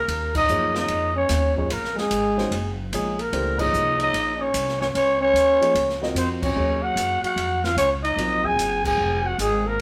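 Modal jazz in Eb dorian at 148 BPM with a swung 4/4 feel, this intense, hypnotic fragment of a longer piece is tuned to A4 = 437 Hz and played by a band live in one room with moderate reverb. A raspy, growling trumpet carries the melody up front, paired with a warm trombone second line full of vibrato and scooped notes, while pizzicato steel-strung upright bass gives a thumpy floor and an airy kit with dark cymbals and a boomy kick enters at 0.1 s. A woody upright piano comps from 0.5 s over Ebm11 and Gbadd9 chords, and the band hits shared accents, the first at 0.3 s.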